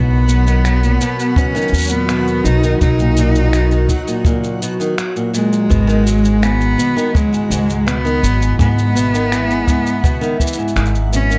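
A biting, bowed cello with vibrato carries the melody up front through a digital delay in this playful folktronica fragment, over fingerpicked flamenco guitar arpeggios roughened by vintage 12-bit sampler grit and delay, a woody pizzicato upright bass, a warbling, nostalgic lo-fi pad with chorus, a faint reversed, dreamy texture, muffled electronic shaker and finger snaps from 0.3 s, and a boomy brushed kick from 1.4 s, all in a dark, warm production with moderate reverb and a band accent at 10.8 s.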